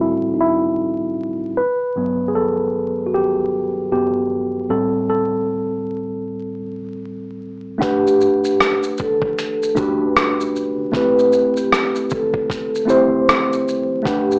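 This hazy, nostalgic lo-fi hip hop excerpt carries vinyl crackle and a small-speaker sound, set in moderate studio reverb. A worn, slightly out-of-tune tine electric piano, mellow and up front with cassette-tape character and a low-pass filter, plays alone for the first 7.8 seconds, moving through Am7 and Gmaj9 in A dorian at 77 BPM with a swung 16th-note feel. At 7.8 seconds a soft-mallet vibraphone enters with the melody, its metallic, ringing tone colored by a slow motor vibrato and a band-limited, vintage quality. A dusty, sampler-style drum kit arrives at the same moment, gritty and compressed, with a thumpy kick, hi-hat, rim click and shaker re-recorded in a large room and placed up front. The chords shift from Gmaj9 to Am9 at 10.9 seconds, and the piece is cut from a longer work.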